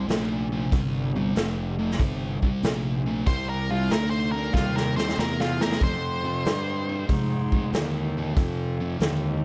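Blues rock and southern rock in a heavy, gritty power-trio fragment with a swung feel, where a double-tracked, picked, thick fuzz guitar riff and a growly, bright, overdriven fingered electric bass sit up front beside a raw garage drum kit whose saturated, punchy kick and medium-tuned snare pump in a small room with a rolled-off top; a dark, distorted octave-fuzz lead guitar with slapback echo carries the melody until 7.7 seconds, a drum fill spans 4.5 to 5.8 seconds, and the harmony moves from C7(no3) to Fm7 under a touch of studio reverb.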